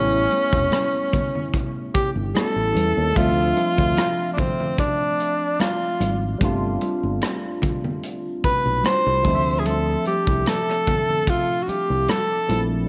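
Bittersweet and cinematic, this lush 1970s-style soul fragment features an up-front, mellow tenor saxophone singing the melody with vibrato, scooped notes and a tape echo, over a barky, lightly overdriven tine electric piano shimmering with analog chorus, a growly fingered electric bass, an acoustic drum kit with a punchy kick, hi-hat and rim click on gently swung sixteenths, and bright, hard-hand congas tucked in the background, all set in an echo-chamber reverb with a small-room ambience.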